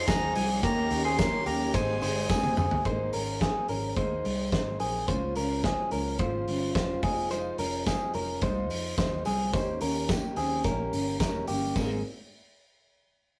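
A straight 4/4 groove at 108 BPM drives this youthful, bright jangly indie pop clip in Ab major, built on a loose, up-front drum kit with a punchy kick, fat snare and dark cymbals that plays a fill into the second section. Beneath it sit a round, foam-muted electric bass and a bright, compressed clean electric guitar picking arpeggios. A reedy, breathy melodica carries the tune until 2.5 seconds, and a very quiet vintage string machine voicing violas holds sustained chords until 2.8 seconds, while a full-bodied fingerpicked steel-string acoustic guitar sits in the background and soft, warbling electric-piano-like synth keys add a gentle fill near the end; a faint, jingly tambourine comes back at 7.3 seconds, all inside a rough rehearsal-room sound with a small, wet reverb.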